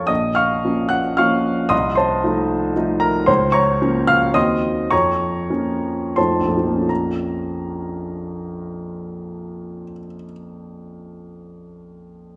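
Bittersweet and brooding, this romantic character piece for solo piano unfolds in Bb minor and triple time with a supple rubato, its tempo drifting between 78 and 116 BPM and slowing from 2.5 to 6.9 seconds before a new section begins. The grand piano sounds intimate and up front, polished with long sustain and audible action noise, spanning Bb1 to Gb6 across a harmonic path from Bbm through F7 and a diminished chord back to Bbm. A wet recital hall reverb surrounds this brief cut from a longer piece, which runs to 12.4 seconds.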